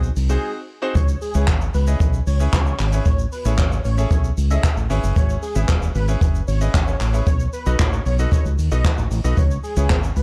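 Energetic yet bittersweet, this dance-pop excerpt in C# minor moves at 114 BPM in a straight 4/4, heard through a small room ambience with a cassette-tape character. A jazz brush drum kit sits up front, its handclaps, hi-hat, punchy kick, medium-tuned snare and shaker carrying an acoustic, roomy, somewhat distant sound. A round, direct fingered electric bass holds the low end with sidechain pumping, joined by a brilliant, polished concert grand piano whose short-sustain chords also pump against the beat. A thick, detuned unison lead with a sawtooth edge, sub octave, vibrato and a moving notch enters at 0.3 seconds to carry the melody. After a brief break, the drop lands at 1.0 seconds as the harmony turns through C#m7, Amaj7, E6 and B7 before returning to C#m7.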